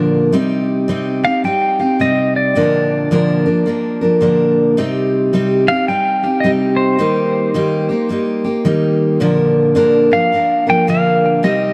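Country in a brooding, heartbroken mood at 108 BPM with a swung 4/4 feel, where a full-bodied, picked dreadnought acoustic guitar carries the accompaniment over a Cm, Bb, Cm, Eb, Bb progression, and a clean, compressed electric pedal steel guitar enters at 1.2 s with a high slide melody played with fingerpicks and shaped by volume swells and tape echo, both guitars sitting up front in a dark, warm production with a moderate plate reverb.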